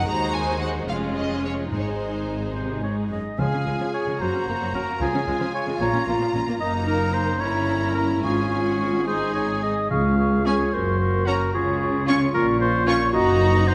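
Set in a wet, reverberant scoring-stage space, this dramatic, urgent excerpt of a quick classical-period orchestral movement in a rubato 6/8 opens with warm, vibrato-rich violins singing the melody over a distant second violin line, lush violas, focused cellos and double basses, and very quiet calf-headed timpani from 1.7 seconds, before a clear oboe joins at 2.6 seconds and a pure straight-toned flute, a bright soft-edged clarinet and mellow background horn chords arrive together at 3.4 seconds as the passage moves into its second section.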